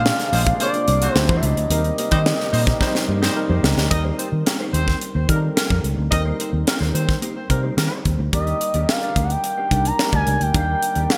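A smooth, dark sawtooth lead with portamento, vibrato and chorus opens this glossy, urban 1980s jazz-funk pop excerpt over a worn, slightly out-of-tune electric piano with light overdrive and chorus, a reedy harmonium, a mellow compressed guitar riff and a round, foam-muted bass, while a crisp fusion kit with a punchy kick and high-tuned snare under gated reverb arrives almost at once. A warm, distant horn section carries a second line from 0.3 to 8.0 seconds. A drum fill closes the opening section, and the lead and harmonium later return at 8.3 seconds for a new passage. The production is bright and digital, with light reverb and a small room ambience.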